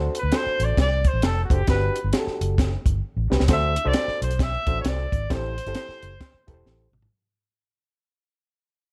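Warm and joyful, this brief cut of uptempo 1960s-style soul swings at 133 BPM in D mixolydian, with a solo trumpet carrying the melody up front with vibrato and a roomy, pop-style punch over a gritty, barky overdriven reed electric piano through a combo amp, a round, foam-muted fingered electric bass, and a compact cocktail drum kit with a high-tuned snare and rolled-off top, whose fill at 3.0 seconds leads into a fade-out from 3.5 seconds.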